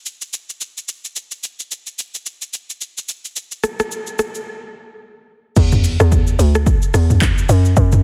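Heavily compressed, radio-like digital ambience frames this soulful, late-night amapiano excerpt at 109 BPM in 4/4, with a 16th-note swing. A layered, tape-warm electronic drum kit sits up front from 0.1 seconds, its punchy kick joined by handclaps, hi-hat, shaker, rim click, toms and crash cymbal. After a break at 4.5 seconds, the drop at 5.6 seconds brings in a hollow, bouncy log drum bass with a fast attack and decaying FM tone, moving between D2 and F#2.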